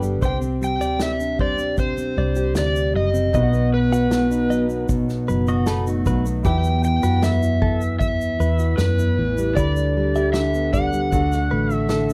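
Acoustic pop in E minor at a slow 77 BPM in straight 4/4, this brief section from a longer piece feels reflective and tender, with a dark, warm production and light reverb. A full-bodied, fingerpicked steel-string acoustic guitar sits up front beside a round, punchy hollow-body electric bass, while a natural country drum kit in a small room supplies punchy kick, medium-tuned snare and shaker. A clean, compressed electric guitar recorded direct plays arpeggios, and a clear, polished concert grand piano with short sustain stays in the background. From 0.3 seconds an overdriven slide guitar carries the up-front melody, and a pedal steel guitar, played with fingerpicks and volume swells, adds a fleeting second line between 5.5 and 6.4 seconds. The harmony moves through Csus2, B, Emadd9, G/D and D.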